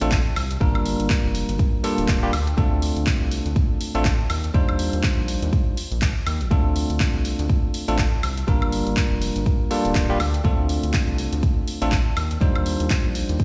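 A bell-like tine electric piano plays bright, up-front stabs with tape echo over a rubbery square bass, both pumping against the sidechain, in a moody, smooth deep house groove at 122 BPM with a 58% swing on the sixteenths in D phrygian. A deep electronic kick enters at 0.1 seconds alongside a layered kit of handclaps, dark hi-hats and woodblock, while the hollow, saturated bass bounces under chords moving between Dm7, Gm9 and Ebmaj7. The sound is that of a big system playing in a bare stone room, with its reverb hanging around this section cut from a longer piece.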